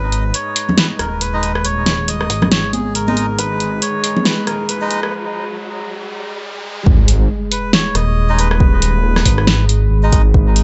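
Dry, echo-heavy and dark-topped, this heavy, cavernous deep dubstep excerpt in G# minor at 138 BPM with a half-time, swung feel sets a reedy, breathy melodica melody with dub echo over a moody, detuned analog pad with chorus, an up-front rumbling, beating saw bass, a fat-snared deep house kit with hi-hat and rim click, bright hard-handed congas, filtered melodica stabs and a riser and sub drop, building from the start through a break at 5.1 seconds before a tape-warm electronic kick, heard briefly earlier, returns with the drop at 6.9 seconds.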